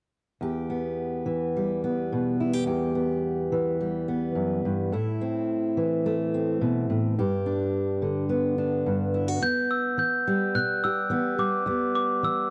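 Folk in E minor at 107 BPM, this stirring, bittersweet excerpt from a longer piece opens with an up-front, fingerpicked steel-string acoustic guitar moving through Em, Am and G from 0.4 seconds, before a ringing, bell-like glockenspiel struck with soft plastic mallets enters with a high melody at 9.4 seconds, all set in a dry, close 1970s-style studio sound with light reverb and small room ambience.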